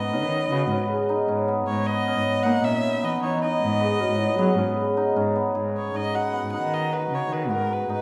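Pensive and restless, this contemporary chamber excerpt in an uneven 5/4 meter sets a rich, expressive violin melody with portamento over shimmering, hammered cimbalom arpeggios and a veiled, muted cello bass bowed up front, while a dark French horn with a soft attack carries a second line until 5.5 seconds, all within a moderate concert hall reverb as the harmony moves from G#m to C#sus2/G#.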